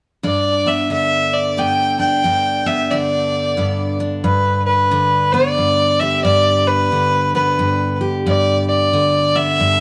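Sunny and heartfelt, this short honky-tonk and classic country excerpt sways in 3/4 at 90 BPM in G major, with a swung eighth-note lilt and light reverb around it. A picked steel-string acoustic guitar, full-bodied with a dreadnought's body, carries the accompaniment up front from 0.2 seconds. A single bowed fiddle, dark and woody with light vibrato, carries the melody in a distant yet up-front voice from 0.3 seconds, sitting a touch louder than the guitar.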